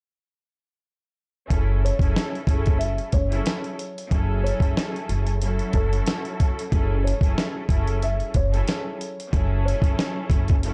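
A swung 92 BPM boom-bap groove opens at 1.5 seconds, with a gritty, compressed sampler-style kit of thumpy kick, fat snare and hi-hat sitting up front beside a woody, pizzicato upright bass holding a low F#1 over an F#m7 chord. Lush, bowed strings with vibrato fill in the background through a cassette-tape haze, while a dark, slightly detuned upright piano with audible action noise carries a mellow, delayed melody from 1.8 to 10.1 seconds. The dry, dusty production gives this tough, brooding fragment of a longer track its dark character as it moves into a second section at 6.7 seconds.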